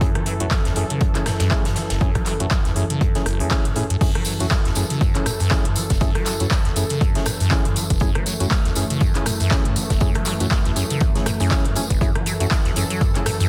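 Gritty and driving, this acid house excerpt is built on an overdriven, punchy electronic kick up front and a squelchy, resonant sawtooth acid bass riff with tube saturation, filter sweep and dub echo, the bass pumping together with a smooth, detuned analog pad holding sustained chords on F#m7. Hollow, mellow organ stabs with a cassette-tape grain and dub echo sit over a swung 16th-note groove of metallic hats, handclaps, rim clicks and crash from an analog drum machine, joined by a very quiet gated kit of hi-hat and snare. At the drop at 4.0 seconds a close, jingly tambourine enters, and the whole is dry and densely limited.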